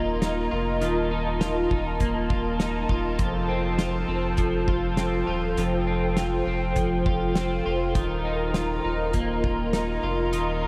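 Floating and ethereal, this dream pop excerpt moves at 101 BPM in a straight 4/4, centred on Eb lydian and cut from a longer piece. A hollow, flute-like pad holds sustained chords with a soft attack and long release, its detuned, warbling tone thickened by ensemble chorus and placed up front, while an electric guitar at the edge of break-up picks arpeggios through analog chorus and delay. Beneath them, a saturated sub bass sits deep and thick with a fast attack, and a loose indie drum kit enters at 0.2 seconds with a punchy kick, fat snare and hi-hat in a pumping room sound. The harmony drifts from Ebsus2 to F at 3.2 seconds and back to Ebsus2 at 7.9 seconds. The whole mix is soaked in a huge ambient reverb with a 7.7-second tail, giving it a dreamy, suspended quality.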